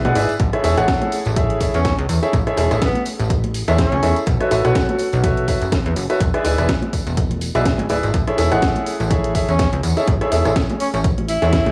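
This short excerpt has the lo-fi character of a home cassette recording, with light reverb and a small-room ambience around a feel-good, uplifting piano house groove at 124 BPM in A major, swung on the sixteenths. An up-front, woody upright piano riff with audible action noise and short sustain pumps against the sidechain, while a punchy, funky analog bass built from sawtooth and square waves with ring modulation adds a fast-attack filter pluck that decays, also pumping. A punchy, tape-warm electronic kick anchors the beat beneath an overdriven, layered house kit of hi-hat, rim click and a cracking snare that sounds re-recorded in a large room, and soft-handed vintage congas and tambourine sit band-limited in the background. A clear tenor saxophone in a classical style enters as a solo voice from 1.7 to 4.2 seconds and returns at 9.5 seconds, its line carried by analog delay. The harmony moves from Amaj7 through B9sus4 and E7 before settling back on Amaj7.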